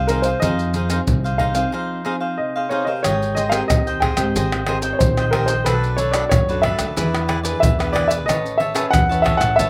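This samba and choro fragment, cut from a longer piece, carries a nostalgic, bittersweet mood in a straight four-beat feel. A warm baby grand piano with short sustain carries the melody in a modest upper register, while a bright, crisp picked cavaquinho and a classical nylon-string guitar, fingerpicked with audible finger squeak, fill out the accompaniment, both touched by a slapback echo. A woody pizzicato upright bass with steel strings anchors the low end, and maracas, pandeiro, tamborim and a tight surdo, played with hard hands, sit up front with a live room character. A break arrives at 1.7 seconds, and at 3.0 seconds the music moves into a new section where the harmony drifts from Abmaj9 through Bm7 and E7 to a closing Amaj9. The sound is dry, with little reverb and an outdoor openness.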